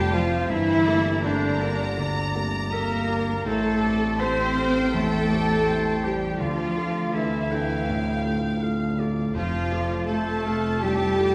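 A lush violin section carries the melody in this moving, hopeful cinematic orchestral passage at a rubato 81 BPM, joined by a bright solo clarinet, a clear distant oboe, an airy flute section and a second, background violin section on supporting lines, over an intense viola section, a soft felt-muted upright piano with audible action noise, warm French horn chords, smooth cellos and double basses, and round, soft-mallet timpani that enter at 9.3 s, all set back in a spacious scoring-stage reverb.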